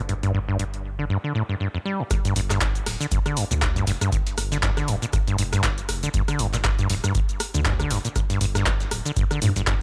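Set in a digital ambience, this driving, gritty acid house excerpt at 119 BPM with swung 16ths opens with filter sweeps on an up-front, overdriven analog drum machine of handclaps, hi-hat, rim click and shaker and on a squelchy, resonant sawtooth acid riff treated with tube saturation and delay, riding a thick, saturated sine sub bass with sidechain pumping, until the drop at 2.1 seconds lands on a G5 chord as a deep, tape-warm electronic kick and a very quiet, compressed sampler-style kit of hi-hat, shaker and medium-tuned snare join in.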